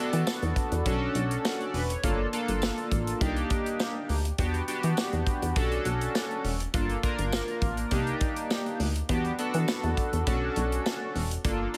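A glossy, up-front chorused polysynth sits in light studio reverb on this slick, funky slice of early-eighties boogie funk, cut from a longer piece and moving at 102 BPM in a straight 4/4 in E dorian. The polysynth carries the accompaniment from the first moment, its retro pulse-wave and sawtooth tones brilliant with chorus, pulse-width modulation and a filter sweep, sustaining chords that cycle through E7sus2, Bm9, Gm9, Cm9 and Em9. Beneath it, a plucky analog bass enters at 0.1 seconds with a punchy, wave-folded filter pluck that decays into a mellow low end, ranging from E1 to E3. A modern studio drum kit, also starting at 0.1 seconds, sounds acoustic and small-roomed, with a tight kick, a medium-tuned snare and hi-hat driving the groove. A jingly tambourine, close yet in the background, joins at 0.3 seconds and drops out at 11.0 seconds, just before the other parts finish near the end.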